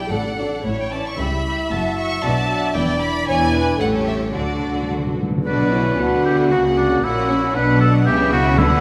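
Lively and cheerful, this quick classical-period movement for symphony orchestra moves at 114 BPM in 2/4 with a rubato feel, starting in D major and turning to B minor at 5.5 s, tuned slightly below standard pitch. A clear, focused first violin section carries the melody with vibrato, while a lush second violin section adds an expressive second line and the violas supply smooth, even accompaniment. Cellos and double basses anchor the bass together, the cellos smooth and even and the basses more distant, as a French horn section holds warm sustained chords from 0.4 s. Timpani struck with medium mallets on calf heads punctuate the opening and play a fill from 4.3 s into the minor-key turn, where a solo oboe enters up front with a clear second line and light vibrato. The whole ensemble sits in the reverberant bloom of a scoring stage, and the passage is cut from a longer piece.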